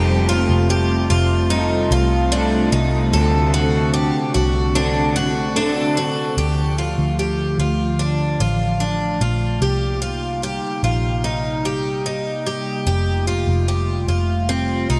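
At 74 BPM, this haunting, ethereal dream pop excerpt opens with a bright, octave-doubled twelve-string acoustic guitar picking arpeggios up front, over a warbling, lo-fi tape-like pad holding sustained chords and a round, foam-muted vintage electric bass, while a dark, slightly broken-up electric guitar adds harmonic tremolo and analog chorus until 6.9 s. A faint FM bell with a halo rings briefly in the background from 5.6 s, carrying ensemble chorus and digital delay. The chords move from Fadd9 and D7 into Dm and Cm7 before returning to Fadd9, all bathed in a moderate shimmer reverb.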